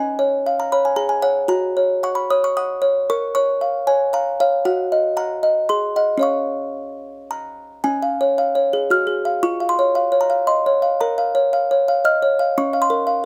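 A classical lullaby for solo music box in a straight 3/4, innocent and tender, heard as a short passage cut from a longer piece. The large box sounds delicate and tinkling, its plucked tones slightly out of tune yet full, spanning C#4 to F6 and sitting close and dry, up front with fine detail. After an opening phrase, a second section begins at 7.8 seconds, moving through gentle chord changes before the passage breaks off at 13.3 seconds.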